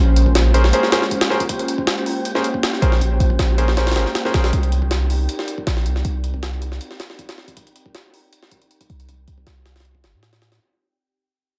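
This drum and bass and jungle excerpt moves at 158 BPM in a straight 4/4 and feels frenetic yet atmospheric, fading out across its full 10.6 seconds as a clip from a longer piece. A deep, boomy 808-style bass with a sine core, a noise layer and a fast, decaying attack sits up front from the start, under a warbling, nostalgic pad of detuned sawtooth and triangle tones with chorus, reverb and vintage 12-bit sampler grit. The sampler-style jungle kit enters at 0.2 seconds, compressed and pitched up, with a thumpy kick, a high-tuned snare and a tape-toned, gritty character, re-recorded in a large room and high-pass filtered on every piece. A brilliant, intimate baby grand piano plays short stabs with audible action noise and dub echo from 0.5 to 4.5 seconds, while an airy, breathy wind-like texture lingers in the background with its own reverb. The harmony shifts from Bbm9 to Cm9 at 4.5 seconds, and the overall mix stays fairly dry.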